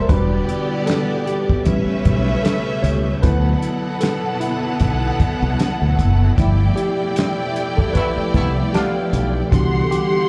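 A lightly swung 76 BPM groove in 4/4 from a dry, fat-snared soul drum kit and a growly, punchy fingered electric bass carries this silky, smooth 1970s-style soul piece, heard live through a club PA, as a worn, slightly out-of-tune tine electric piano with light overdrive and slapback echo solos throughout over lush, bowed studio strings with vibrato, a phased, chorused vintage string machine holding sustained chords in the background, and a distant, roomy horn section that adds stabs from 7.9 to 9.3 s while the chords move from Em7 through A9, D69 and G13 to Cmaj9#11.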